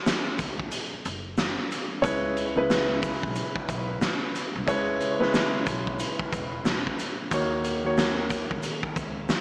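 A swung boom-bap hip-hop groove at 91 BPM in 4/4 opens with a break led by a raw, saturated garage drum kit with a punchy kick, fat snare and hi-hat, its kick dropping out from 0.7 to 2.0 seconds, alongside a very quiet, grainy egg shaker and a thumpy, woody pizzicato upright bass on gut strings. At 2.0 seconds a dark, intimate grand piano with audible action noise and cassette-tape colour takes up the accompaniment over C#m7 and later D#m7 in C# dorian, while a clear upright piano with long sustain and a diffuse ambient delay plays a short melody until 6.2 seconds. The moody, gritty excerpt sits in a lush hall reverb with a small-speaker sound, the drums up front with a rolled-off top.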